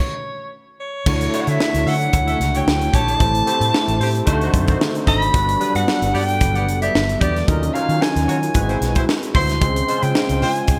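Urban and slick, this polished 1980s jazz-funk pop fragment moves at 112 BPM in 4/4, with a light swing on the sixteenths. A mellow soprano saxophone opens alone, its roomy, vibrato-laden line carrying scooped notes through a digital delay as it leads the melody. At 1.1 seconds the band arrives: a crisp fusion drum kit with bright cymbals, a high-tuned snare and tight kick sits up front in gated reverb. Beneath it, a dark, round, foam-muted fingered bass anchors the groove, while a barky tine electric piano, clean through a combo amp and thickened by ensemble chorus, supplies the accompaniment. A shimmering, retro pulse-width pad holds very quiet sustained chords in the background, and from 1.9 seconds a smooth-topped horn section adds a second line, also through digital delay. The harmony travels from Dmaj9 through Am7, D7b9 and Gmaj7 to D#m9 and G#7alt before settling on C#maj7, all framed by bright, digital-era studio production.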